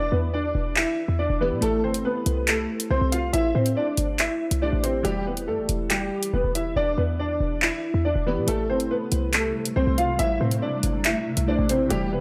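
Ominous and menacing, this drill-style hip hop excerpt moves with a half-time feel and cycles between Em7 and Am7. A clear concert grand piano carries the melody up front, its natural tone and short sustain given depth by ensemble chorus, a low-pass filter and a diffuse ambient delay. Behind it, glassy digital keys with detuned sine and triangle layers supply a bright, chorused accompaniment in the background, while a punchy, tight 808-style bass with a noise layer hits hard and decays quickly. The electronic drill kit comes in at 0.8 s during an opening break, with bright hats and handclaps up front, and the hi-hats drop out briefly from 6.8 to 8.5 s. At 9.2 s a mellow granular cloud pad enters with slow-attack sustained chords that blur and evolve, and the whole mix sits in a dreamy plate reverb.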